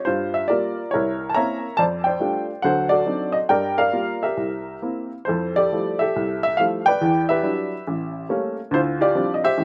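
A lone upright piano opens this solo jazz fragment, moving through Gm7, C7b9 and F69 in F major with a sophisticated, warm mood. The tempo sits at 139 BPM in 4/4, with a swung eighth-note feel and a rubato looseness. The instrument has a woody, slightly detuned character and a short sustain, placed up front and present in the mix, ranging from A1 up to Bb5. Light reverb surrounds it, and the recording was made outdoors. After a first passage that circles back through Gm7 and C7, a new phrase begins at 5.3 seconds on Fmaj9 and drifts through Em9 and A7b9 before the cut ends on Dm11 at 9.6 seconds, clearly lifted from a longer piece.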